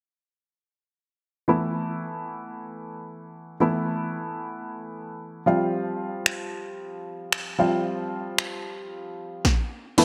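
Energetic and confident, this dance-pop excerpt opens at 1.5 seconds with a dark baby grand piano playing a mellow, intimate accompaniment up front. Its short sustain and audible action noise give it a natural, close feel, while sidechain pumping makes it breathe. The harmony moves from Asus2 to Fsus2. At 6.3 seconds a punchy analog drum machine joins with kick, snare, finger snaps and crash cymbal, its tape-tinged electronic thump sitting forward in the mix. At 10.0 seconds a filtered supersaw swell appears in the background, with evolving, detuned unison sawtooth chords, a soft attack, lush chorus and sidechain pumping. A moderate plate reverb and bright 1980s-style digital production tie the sound together.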